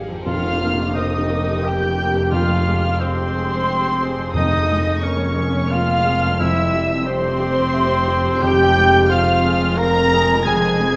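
Moving and full of longing, this rubato cinematic film score passage in 3/4 at 89 BPM opens with muted, con sordino violins singing a veiled melody over a second violin line, a dark grand piano in the background, very quiet violas, distant roomy French horns holding sustained chords, ringing thumb-plucked harp arpeggios and a low double bass section. From 0.3 seconds a pure flute section and a warm solo cor anglais join the second line, with close cellos on the bass and a dry tam-tam touch, while soft-mallet timpani enter at 4.3 seconds. The orchestra sits in a wet scoring-stage reverb, with lossy compression artefacts in the sound.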